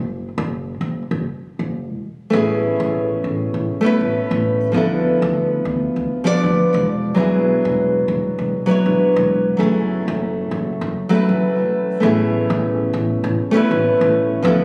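A pizzicato upright bass with woody, thumpy gut strings opens alone in this blissful, warm sunset chillout excerpt at 99 BPM in A major with a 16th-note swing, until a dark, fingerpicked classical nylon-string guitar with delay enters up front at 2.3 s over Amaj7, Dm6, E7 and F#m9 before returning to Amaj7 at 12.0 s, all heard through a phone recording in the room with a wet concert hall reverb.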